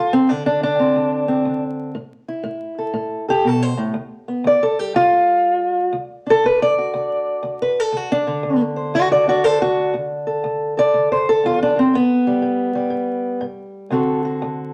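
Swung eighths at a laid-back 120 BPM in 4/4 carry this soulful acoustic country blues excerpt in D mixolydian, with a single fingerpicked acoustic archtop guitar playing solo throughout and spanning D2 to D5. The guitar sits up front with a warm, boxy tone and audible finger squeak, moving through D7, A5, G7 and D before the passage restarts at 9.9 seconds on D5, moving into a chordless stretch at 11.9 seconds and landing on D7 at 13.9. A moderate studio reverb and a layer of vinyl crackle give the recording an aged, intimate feel.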